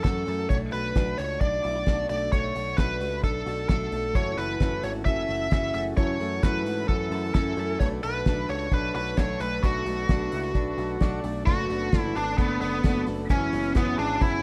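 A straight 4/4 pulse at 131 BPM drives this restless, bittersweet jangly indie pop piece, led by a cloth-damped, thuddy drum kit with a fat snare, tight kick and dark cymbals over a round, punchy picked electric bass. A distorted bluesy lead guitar sits up front carrying the melody through plate reverb, while a twangy, slightly broken-up electric guitar through a small old amp plays arpeggios in the background and a very quiet, shimmering twelve-string acoustic adds octave-doubled picked accompaniment with a hint of finger squeak. A reedy combo organ with light vibrato joins at 4.1 s, and the rough home demo mix, set in a small room, moves between F#m7 and Bm7 before shifting to Bm7/F# at 11.5 s.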